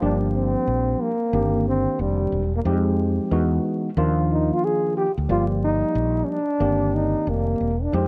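Worn, warbling old tape sound wraps this brief fragment of a longer piece, with a cassette-tape character, vinyl crackle and a wavering pitch drift over light reverb and a small-room ambience. It is nocturnal, cool jazz-hop with a swung sixteenth-note feel, and all three instruments play together for its full 8.1 seconds. A breathy, dark trombone carries the melody up front as a jazz-style solo, its tone shaded by a light vibrato. Beneath it, a tine electric piano supplies the chords, clean yet slightly out of tune and heard as if through built-in speakers. A round, direct fretless electric bass anchors the low end with a mellow, electric presence. The harmony drifts through minor-ninth and major-ninth colours, moving from Gm7 and Cm9/G through Fm9, Emaj9 and Ebsus2 before circling back.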